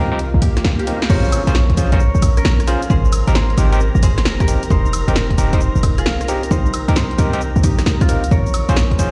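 Swung two-step UK garage at 133 BPM in Bb dorian, bouncy and moody, pairs a ringing concert harp melody with delay, barky, gritty tine electric piano stabs through tape echo, a silky vintage string machine pumping softly in the background, and a tight, up-front 808-style bass, with a punchy analog drum machine entering at 0.2 seconds and a tape-warm electronic kick at 0.4 seconds, then a faint electronic swell and drum fill as the kick briefly drops out before the drop hits with an impact at 1.1 seconds, heard as if played on a big sound system in a bare room with large studio reverb and vinyl crackle.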